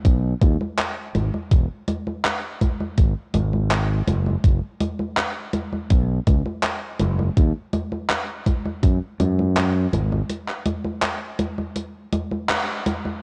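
A growly, overdriven fingered electric bass sits up front in this woozy, melancholic vaporwave excerpt, playing low until about 10.2 seconds over a thumpy electronic kick that carries 12-bit sampler grit and drops out around 9.0 seconds. A gated 80s digital drum machine with congas, handclaps and hi-hat, steeped in gated reverb and the same gritty sampler texture, runs through to the end, carrying the break from 10.3 seconds and a brief band accent near 12.5 seconds. The whole track has light reverb and the warbling pitch drift of worn cassette tape.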